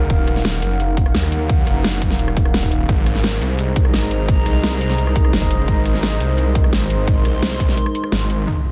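A straight drum and bass groove opens this dark, technical drop, with a punchy electronic kick and a layered kit of huge snare, metallic hats and rim clicks, both tape-tinged and set in studio reverb, under a thick, detuned saw bass that sits up front and pumps against the beat. Above it, a moody analog pad with phaser and chorus holds sustained chords moving from Ebm to Ab, while a warbling, lo-fi tape-like pad adds a nostalgic, mellow haze to the futuristic, mechanical mood. The kick drops out at 7.7 seconds for a short break, and at 8.5 seconds a single bright analog pluck lands with an up-front electronic impact, all within a dense, heavily limited digital mix.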